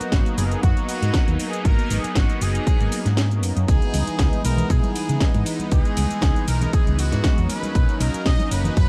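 A dark, warm production with little reverb frames this cosmic, groovy nu-disco cut, moving at 118 BPM in C# dorian with a light 16th-note swing over G#m7, C#m7 and Bmaj7. A punchy, up-front electronic kick and a house kit with cracking snare, metallic hats, ride and shaker drive it, while a round, dark hollow-body electric bass with tube saturation holds the low end and a detuned sawtooth pad adds chorus, sampler grit and sidechain pumping beneath a bright trumpet section carrying the melody through delay. The kick drops out between 3.2 and 3.7 seconds, and very quiet, close congas with a thick skin join at 3.9 seconds.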